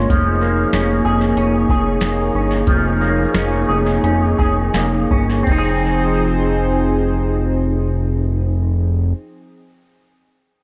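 A hazy, echo-heavy mix sits in a moderate chamber reverb, giving this short dream pop excerpt a melancholic, drifting air in straight 4/4. A smooth, detuned sawtooth pad holds sustained chords up front with a soft attack and chorus, while a fat, nasal analog bass anchors the low end with a fast, plucky attack. An electric guitar through an envelope filter picks clean, twangy arpeggios with a bright, scooped tone, colored by ensemble chorus and tape echo. A soft vintage rhythm box with a deep kick, crisp snare, metallic hats and crash cymbal is also sent through tape echo. The whole excerpt gradually slows down until 5.5 seconds, and the rhythm box drops out at 5.6 seconds. The harmony moves from Eb7sus4 over an F bass to Fm7 at 5.5 seconds, where pad, bass and guitar carry on alone until the cut at around 9 seconds.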